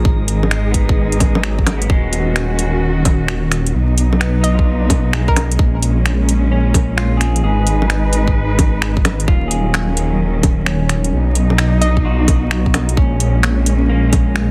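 Dry, dense and heavily limited, with a haze of vinyl crackle, this rainy, ghostly future garage cut moves at 130 BPM in Eb minor with a 16th-note swing, its chords cycling through Abm, Ebm7, B and Bbm7. A rumbling, detuned saw bass with tube saturation sits up front beside a tight electronic kick and a tape-toned garage kit of bongos, finger snaps, metallic hats and a softly clipped snare, while veiled, con sordino strings hold lush chords and a slightly broken-up lo-fi electric guitar adds accompaniment through dub echo, the bass, strings and guitar all pumping with sidechain. A very quiet, glassy texture drifts through the opening until 1.9 seconds, and a hollow, nasal square-wave pluck with chorus and dub echo briefly carries the melody from 4.4 seconds and again near 11.8 seconds.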